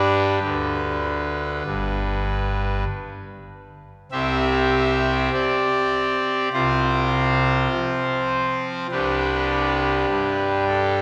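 A pipe organ sounding its trumpet stop carries this brief classical chorale-style excerpt alone, its brassy, bright voice placed up front with a baroque voicing and a touch of chiff at the start of each pipe's speech. The music moves in a slow, unhurried 4/4 with a rubato feel, giving the passage a serene yet majestic bearing. Its compass stretches from a deep G1 up to E5, so the harmony feels grounded and full. The chords travel from G to C, then F5 over C, and settle on G over C near 8.9 seconds. A wet church reverb with a long 3.1-second decay surrounds the instrument, letting each chord hang in the stone-like space before the 11-second fragment breaks off mid-piece.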